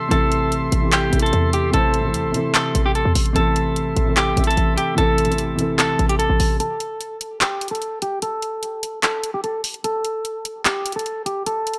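A clean, fingered electric guitar carries the melody up front in this brooding, eerie trap excerpt, its tone softened by lush chorus and a low-pass filter. Beneath it, a dark, mellow grand piano with audible action noise and a vintage character accompanies through its own low-pass filter, while a warm woodwind section with light vibrato and a smooth top holds tight, classical-style sustained chords in the background over a single minor chord. A short 808-style bass, punchy and sine-based with a noise layer, a fast attack and a decaying tail, anchors the low end of the half-time groove alongside an electronic, produced trap kit with bright hats and handclaps sitting up front. At 6.6 seconds the piano, woodwinds and bass drop out, opening a chordless break under a filter sweep where guitar and drums carry on, and the kick falls silent at 11.5 seconds. Light reverb and a digital ambience surround the whole arrangement.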